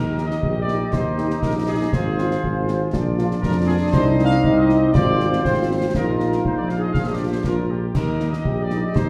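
A dark, up-front tuba anchors this spirited, festive military-style march for wind band in Eb major at 120 BPM in 2/4, with a clear trumpet section carrying the melody over a woodwind section and a euphonium with light vibrato on second lines, a mellow French horn section accompanying in the background from 0.2 s, and concert snare drum, concert bass drum and clash cymbals with dark cymbals, while the trumpets, woodwinds, horns and euphonium sit distant in a large, roomy studio reverb.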